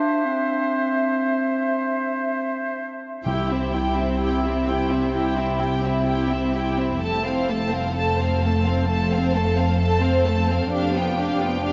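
Serene and lyrical, this slow romantic orchestral passage in C major moves at 58-67 BPM in 4/4 with a rubato feel, and it is cut from a longer piece. It opens with woodwinds alone for the first few seconds: a bright oboe with light vibrato, an airy, hollow flute with crisp attack, and a mellow, up-front clarinet. At 3.2 s the strings take over, led by a dark violin section carrying the melody with light vibrato and a soft, sul tasto touch, while a second violin section sits in the background and violas fill in the accompaniment with vibrato. Cellos and double basses anchor the low end, the basses sounding pure and floating, and very quiet timpani struck with hard mallets add a close, dry accent near the start of this entry. The harmony moves from C to F and settles on G7/F, all bathed in a long, wet cathedral reverb with a soft, rolled-off top end.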